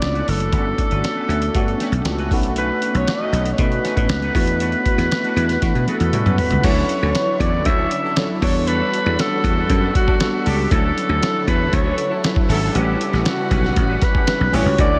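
Breezy and urban, this polished 1980s jazz-funk pop cut moves at 118 BPM in a straight 4/4 in D major, drawn from a longer piece and bathed in a dreamy, reverb-soaked mix. Up front, a growling alto saxophone carries the melody with a raspy, breathy vintage tone and vibrato, trailed by a diffuse ambient delay, while a dry, punchy thumbed slap bass and a compressed, sampler-style drum kit with a thumpy kick and muffled character drive the groove. A clean tine electric piano with analog chorus supplies the accompaniment and adds a fill between 1.0 and 2.6 seconds, and a picked, twangy electric guitar riff sits in the background under an ensemble chorus. After a drum fill, the second section opens at 6.6 seconds, where a very quiet, dark and lush studio string section enters with bowed sustained chords, joined at 8.0 seconds by a distant, roomy horn section playing a soft second line with light vibrato. 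The harmony glides through rich extended chords such as Gmaj9#11, A13 and Dmaj9, giving the passage a smooth, sophisticated sheen.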